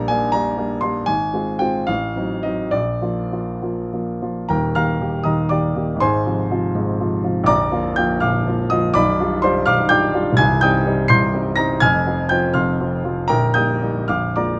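A warm baby grand piano carries this solo classical, romantic character piece, moving through Gm/Bb, Fm/Ab and a diminished chord before settling on Bb. Set in Eb major and 6/8, it flows with a rubato feel at roughly 66-85 BPM counted in dotted quarters, and the mood is passionate. Around 4.5 seconds a new section begins on Eb, passing through G7/B, Cm and Fm before reaching Bb7 at 14.1 seconds. The piano spans Bb0 to C7, its tone present and polished with a short sustain. Close, detailed microphones place the instrument up front in a dry room, and the recording is cut from a longer piece.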